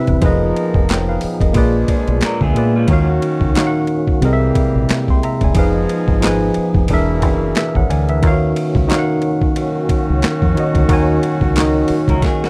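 A worn, slightly out-of-tune electric piano with a barky bite sits up front in this late-night neo-soul R&B excerpt, laid over a gritty, pitched-down boom bap kit with a thumpy kick, high-tuned snare, handclaps, hi-hat and ride that swings loosely and closes with a drum fill at 12.2 seconds. A round, foam-muted fingered bass anchors the minor-key harmony, while a very quiet, fat tonewheel organ through a slow rotary speaker holds sustained chords and a distant, roomy horn section adds punchy stabs with light vibrato and octave doubling. A dark, lo-fi, slightly broken-up guitar plays a brief second line from 2.2 seconds and returns near the end, all captured in a dry, close 1970s-style studio sound.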